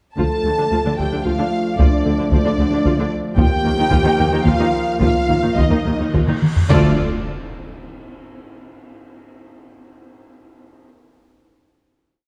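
Heroic and dark, this brief epic orchestral film cue in 3/4 sets two violin sections doubling the tune at the octave over a viola section's driving ostinato, mellow French horns, a background trombone section and a very quiet low end of rich cellos, dark chamber double basses and a mellow tuba, all moving from Dm to Ebadd9. A taiko ensemble pounds out a big drum ostinato with heavy sticks, and a huge cymbal swell from 6.1 seconds and a drum fill from 6.3 seconds lead into a low impact on the final Dm chord at 6.7 seconds. The sound is dark and warm, set in a moderate scoring-stage reverb.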